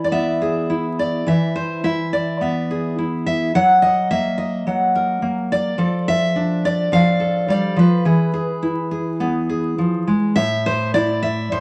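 A bright, full-bodied fingerpicked steel-string acoustic guitar sits up front in this reflective, melancholic folk solo, its fresh strings moving from E through F#7 and Fmaj13 back to E before turning to A minor at 10.4 s, set in moderate studio reverb over a bed of vinyl crackle.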